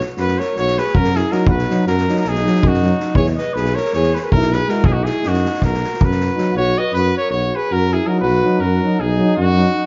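A clear, roomy trumpet carries the melody up front in this festive, wild excerpt of Balkan brass band folk, moving in a brisk 9/8 at 320 eighth-note beats per minute in B major over a B–E–B progression. Beneath it, a vibrato-tinged alto saxophone sings a smooth second line while a soft-attacked tuba anchors the bass up front, and a street-band drum kit with a boomy kick and medium-tuned snare drives things until 6.4 seconds. From 1.3 seconds, a warm French horn sits in the background and a punchy euphonium adds accompaniment, all set in a moderate recital-hall reverb with a dark, warm production.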